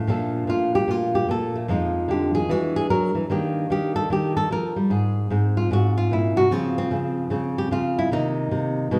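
A wet recital-hall reverb with a 1.5-second tail surrounds this short cut from a longer solo jazz piece, recorded in a church or concert hall. A dark, up-front nylon-string guitar, fingerpicked in a classical manner, plays alone from 0.1 to 9.0 seconds at 149 BPM in 4/4 with a swung eighth-note feel. In Bb major, it moves through Bbmaj7, Fm7, E7, Ebmaj7, Ab, Dbmaj7 and Cm7, giving the passage a swinging, sophisticated mood.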